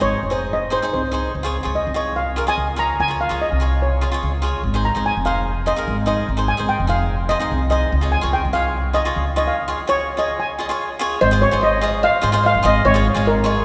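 Calypso with a carefree, sunny mood, this clip is cut from a longer piece and set in a straight four-beat groove. A steel pan, played double seconds with medium rubber sticks, carries the melody up front with a shimmering, metallic tone and a boxy small-room character. Beside it, a bright, crisp acoustic cavaquinho picks out the accompaniment, while a woody, dark pizzicato upright bass with steel strings anchors the low end. After a break from 9.6 to 11.2 seconds, the music moves into a new section, and a metallic cowbell joins in the background. A long, wet cathedral reverb gives the whole recording the feel of a church or concert hall.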